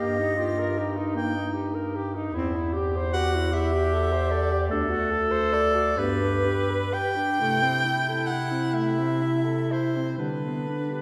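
Classical chamber music for a single-reed quartet, this serene, tender passage moves in a slow, rubato 6/8 at roughly 41-52 dotted-quarter beats per minute, cut from a longer piece. A clear, close-miked soprano saxophone sings the melody up front with vibrato and soft attacks, while the alto saxophone adds a second line with light vibrato, the clarinet gives a punchy, present accompaniment, and a mellow bass clarinet with a smooth top anchors the bass, also up front. The four reeds play together through the whole 11 seconds, bathed in a long church reverb that lingers for about 2.8 seconds.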